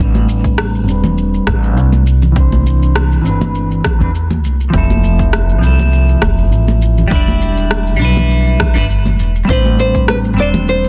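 A dry, dense and heavily limited modern mix carries this relaxed, warm sunset chillout fragment in A minor at 101 BPM, with a lightly swung 16th-note feel over Am11, Cmaj9, Fmaj7 and Em7. A woody, thumpy pizzicato upright bass with gut strings sits up front beneath a clean, picked and compressed electric guitar that moves through a low-pass filter sweep with tape echo, while a punchy, overdriven electronic kick, a layered electronic shaker and rim click, and bright hard-hand congas in the background fill out the groove. At 9.5 s a small, fingerpicked nylon-string guitar steps forward with a brief tape-echoed melody as the chords return to Am11.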